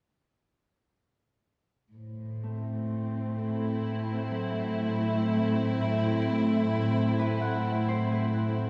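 In a straight 4/4 at 64 BPM, this spacious, reflective ambient excerpt in A dorian opens on A minor at 1.9 s, where a dark, sul tasto string section sits up front with soft-attack sustained chords, light vibrato and a low-pass filter sweep, while a pure, glassy glass harmonica fades in at the same moment as a slow-attack, beating texture in the background. From 2.4 s, a ringing, thumb-plucked Celtic harp fades in with delayed arpeggios, set further back. A wet scoring-stage reverb surrounds the dark, warm production.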